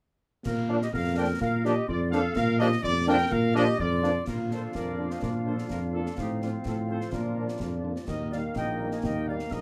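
A mellow tuba sits up front, carrying the bass with gentle vibrato in this rousing, festive military-style march for wind band at 126 BPM in 2/4, in Bb major. A dark, distant trumpet section takes the melody, while a shadowy, roomy woodwind section and a small, airy flute group with vibrato and crisp attack play second lines. A rounded French horn section accompanies in the background and a bright trombone section holds chords with slight vibrato from 0.7 seconds, over concert snare drum, dusky clash cymbals and concert bass drum in a live room, heard through close, detailed microphones with light reverb in this excerpt cut from a longer piece.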